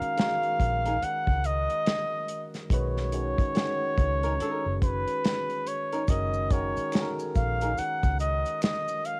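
Smooth and warm, this slow neo-soul R&B excerpt at 71 BPM sways on a swung sixteenth feel in F# major. A flugelhorn with light vibrato and a smooth top carries the melody up front over a dark, small-room soul drum kit with a punchy kick and a round, foam-muted fingered electric bass, while a bright, barky tine electric piano, lightly overdriven and phased, moves through F#6/9 to Badd9 and back. A fingerpicked flamenco guitar adds a warm second line from 0.9 seconds, compressed and saturated maracas and finger snaps sit in the background from 6.1 seconds, and studio reverb frames this home recording on cassette.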